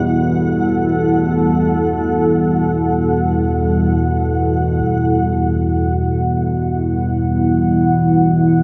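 In free time, this desolate, cavernous dark ambient drone in E minor, tuned to A4 = 435 Hz, opens on an Emadd9 chord held by a deep, detuned sawtooth pad with a sub octave and chorus, set up front over a resonant analog drone whose pulse-width modulation keeps it evolving. A faint, flickering, grainy triangle texture hovers high above until 4.9 s. From 4.8 s a filter sweep moves across the drone, all of it soaked in a cathedral reverb that lingers for about 6.1 seconds.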